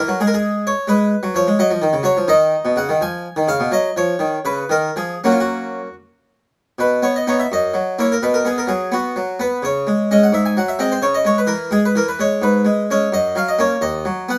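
A solo harpsichord with two sets of strings fills this short passage, its plucked tone airy yet full and placed up front. The music is a flowing, dance-like baroque-style suite movement in 6/8, moving at about 85 beats per minute in dotted quarters with a rubato feel. It begins in F# major and moves to B major at 6.8 s, with the harmony passing through chords such as Fdim, C#7/E#, G#7 and C#m along the way. The instrument ranges from D#2 up to G#5, so both low bass notes and bright upper lines are heard. Close, detailed microphones and very little reverb keep every pluck clear and intimate. This passage is taken from a longer piece and runs to 14.4 s.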